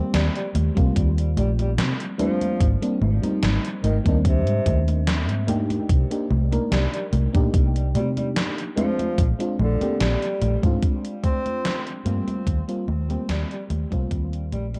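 Nostalgic and woozy, this 73 BPM vaporwave excerpt in Eb major sets a distant, vibrato-laden tenor saxophone melody with tape echo over a soft, warbling FM electric piano with chorus and analog delay, a dark, foam-muted fingered bass up front, an overdriven, gritty drum machine of congas, hi-hat and gated-reverb snare, and a thumpy electronic kick, all moving through Eb6, Abmaj9#11, Cm7 and Bb9 in an echo-heavy mix before fading out from 10.3 seconds.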